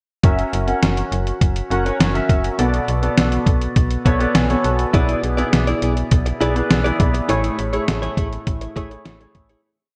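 This 1980s-style pop piece sits at 102 BPM in a straight 4/4, with a moody, nostalgic air and tuning set slightly flat at A4 = 436 Hz. A pitched-down, muffled sampler-style drum kit sits up front with a thumpy kick, a medium-tuned snare and hi-hat, carrying vintage 12-bit grit and gated reverb behind a big backbeat. A slap-like FM bass with a snappy, metallic attack drives eighth notes underneath, while a clear concert grand piano, bathed in lush chorus and showing audible action noise, plays syncopated drop-2 chords and adds a short fill at 3.8 seconds. At 4.9 seconds a direct-recorded clean electric guitar enters with a picked, compressed funk-style riff, treated with the same chorus plus digital delay. The harmony moves through F#7, Bm7, E7/B and Amaj7 in a single verse, and a fade-out begins at 7.3 seconds within a bright 1980s-style digital production with light reverb.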